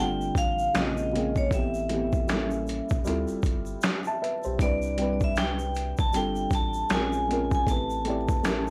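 Mellow and cosy, this lo-fi hip hop excerpt moves at a relaxed 78 BPM in 4/4 with a swung sixteenth-note feel. A bright, ringing vibraphone struck with hard mallets carries the melody from the start, its metallic tone shimmering with a slow motor vibrato and trailing tape echo. Beneath it, a felt-muted upright piano sits up front with a dark, intimate, short-sustained sound, while a soft, round dub sub bass adds deep, sustained low end. A sampler-style boom bap kit enters at 0.3 seconds with a thumpy kick, medium-tuned snare, hi-hat and finger snaps, compressed and gritty as if re-recorded in a large room, and a grainy egg shaker rustles in the background. The harmony drifts through jazzy chords such as G7sus4, Bbm7, Dm11 and Cmaj9, and the dry hardware recording carries transformer saturation, vinyl crackle and a light touch of reverb.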